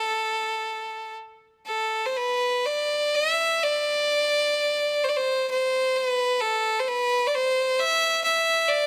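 A lone fiddle opens this short Celtic folk fragment, bowed by a single player and placed up front with a clear, intense tone touched by light vibrato. The mood is tender and pastoral, and the 6/8 metre is stretched freely in a rubato feel, so the phrasing breathes rather than keeping strict time. A brief opening phrase gives way at 2.1 seconds to a longer passage that carries on until the recording cuts off at 8.9 seconds. The melody stays within a modest span from A4 to E5, keeping the line intimate. Close, detailed miking captures the fiddle's every nuance, while a light reverb adds a gentle sense of space around the instrument.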